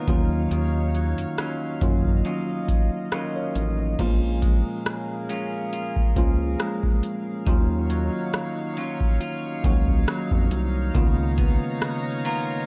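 Sensual and longing, this contemporary R&B excerpt rides a lightly swung 4/4 groove with a dry, close sound. A booming analog drum machine is up front, with a deep kick, metallic hats, rim click and crash cymbal, while a rubbery, bouncy square-wave bass with a resonant filter pluck enters at 0.1 s and drops away at 11.6 s. A worn, slightly out-of-tune tine electric piano carries the accompaniment with a touch of overdrive, as if heard through its built-in speakers. Beneath it, a clean, picked electric guitar plays arpeggios through tape echo, and a shimmering, retro pulse-width pad holds sustained chords with chorus and sidechain pumping. The harmony moves from Ebm9 to Bbm7 at 4.0 s, returns to Ebm9, and reaches Db13 before the passage is cut off.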